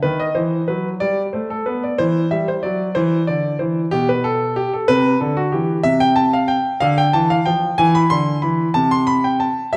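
A warm, polished grand piano plays alone from the start, sitting present and up front in a recital hall whose reverb leaves a wet, 1.6-second tail. This restless, dramatic classical-period sonatina fragment moves at 62 BPM in a straight 6/8, spanning B2 to C6 as its harmony wanders through Gadd9, D9, C, Dmadd11 and E7b13, broken by brief unharmonized moments. Lasting 9.8 seconds, it is cut from a longer piece.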